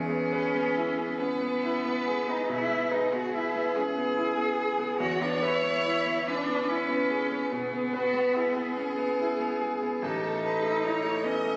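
A rubato 12/8 pulse of 44-51 BPM in dotted quarters carries this tender, slow romantic movement for piano trio in E major, tuned to A4 = 445 Hz, and cut from a longer piece. Throughout its 11.6 seconds, a single bowed violin sings a smooth, even melody with rich vibrato, while an expressive cello shapes a second line beneath it with vibrato and portamento, and a clear, vintage-toned concert grand piano sits up front with deep bass and a smooth accompaniment. The harmony rests on E before moving to A at 10.0 s, all heard through a moderate concert-hall reverb, captured on a phone in the room amid club ambience.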